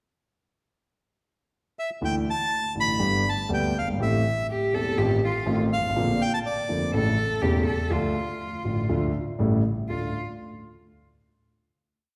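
A short, passionate and melancholic tango in D minor at 122 BPM, played rubato, opens with a reedy, bright bandoneon melody at 1.8 s, built from motifs in period phrases. A concert grand piano joins at 2.0 s with a milonga rhythm, its deep bass, long sustain and audible action noise giving a vintage, intimate feel. From 4.5 s a single bowed cello, played sul tasto with light vibrato and an airy, soft attack, adds answering phrases in the melody's rests before piano and cello settle on a final D minor chord in a reverberant hall.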